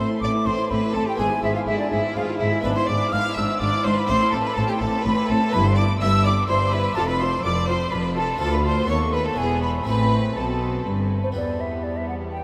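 Driving and stormy, this cut from a baroque-style classical concerto movement in A minor moves at 124 BPM in 3/4, with an airy, hollow concert flute carrying the melody up front over a distant, lush violin section with portamento, while a clear, intense chamber violin section plays a second line, a bright, dry harpsichord and a smooth viola section in the background fill in the accompaniment, and a rich cello section and an expressive double bass section anchor the bass until the basses drop out at 11.3 s, inside a vast, echoing space with a huge, wet reverb.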